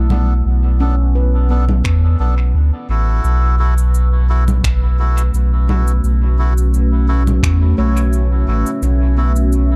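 A round, sine-like sub bass sits up front through this hazy, deep ambient dub excerpt at 86 BPM in 4/4, set to a lightly swung sixteenth-note feel, with chords that move from Bm7 to F#m7 at 3.2 seconds. Around it, a dark detuned pad built from sawtooth and sine layers, wave-folded and ring-modulated, holds long chords with slow attack and long release, thickened by chorus and its own reverb. A handpan played with soft fingertips rings out meditative arpeggios through analog delay, dropping away at 3.5 seconds and returning at 7.8 seconds. A reedy, breathy melodica adds short stabs roughened by vintage 12-bit sampler grit and thrown into dub echo. Electronic congas, finger snaps and shaker, overdriven and re-recorded in a small room, also trail off into dub echo, while a muffled, pitched-down kick thumps in the background from 1.8 to 7.6 seconds, the whole mix steeped in echo-heavy digital ambience.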